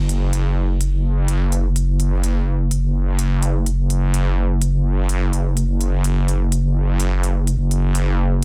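A bouncy, aggressive bass house groove in 4/4 at 126 BPM with a 58% swing on the sixteenths, tuned to A4 = 439 Hz and taken from a longer piece. A heavy, saturated wobble bass sits up front around F#1 from 0.0 to 8.4 seconds, its detuned square-and-sine tone given a fast attack, long sustain, compression, chorus and tube grit. Beneath it, crisp, layered electronic hi-hats with overdrive and a large-room character run from 0.1 to 8.0 seconds, all set in a dry, dense and heavily limited modern master.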